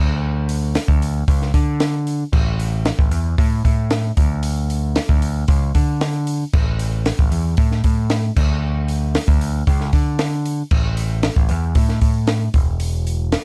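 This indie rock piece moves at 114 BPM in a straight 4/4, and it's a short cut from a longer work. It opens on a growling picked electric bass, overdriven and bright, spanning a range of E1 to D3, with a compact cocktail drum kit joining at 0.5 seconds. The kit sounds acoustic and dry, with dark cymbals across crash and hi-hat, a high-tuned snare and a punchy kick. Both parts sit up front in a dark production with little reverb, giving the pair a close, direct presence. The mood is carefree yet wistful, carried through a single section that runs to 13.4 seconds.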